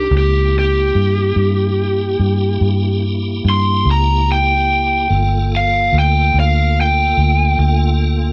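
A dark, overdriven lead guitar sings a brooding, soulful melody up front from the first moment, carried by a round, foam-muted electric bass and a piping tonewheel organ holding sustained chords through a slow rotary speaker with chorus vibrato, key click and a light touch of grit. This short slow-blues passage in 12/8 sits on a C#dim7 chord before settling onto Gm7 at 5.1 seconds. A light reverb gives the room a little air behind the close, amped guitar and bass.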